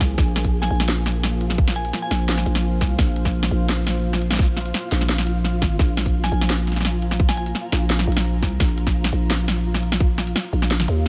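From the start, a deep, moody sawtooth pad with chorus, reverb, 12-bit sampler grit and sidechain pumping sits in the background beneath a growling, buzzy 808-style bass with tube saturation. Alongside them play a tight electronic kick and an up-front kit of cracking snare and crisp hats, all at 171 BPM in a dark, spacious half-time drum and bass feel. A faint flickering, grainy texture drifts behind the groove, while a glassy FM bell with chorus and tape echo rings out at 0.6 and 6.2 seconds, and the kick drops out at 10.1 seconds in this fragment of a longer piece.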